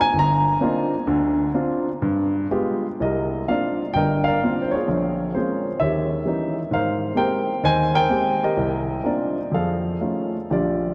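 A dark, mellow grand piano opens this moody, cool solo jazz passage, cut from a longer piece, and it is the only voice throughout its roughly 10.9 seconds. The playing swings its eighth notes in 4/4 while pulling the time freely in a rubato feel, ranging from low G1 up to Bb5. Its smooth, vintage tone has a short sustain and sits up front, set in a vast, echoing cathedral-like space whose long, wet reverb lingers around each phrase. The harmony moves through rich extended chords such as Cm11, G7b9 and Abmaj9, and a new section begins at 3.0 seconds that returns to Cm11 before drifting through Bbm9 and Eb7b9. The passage closes on an altered F7 chord, leaving the harmony hanging in that cavernous room.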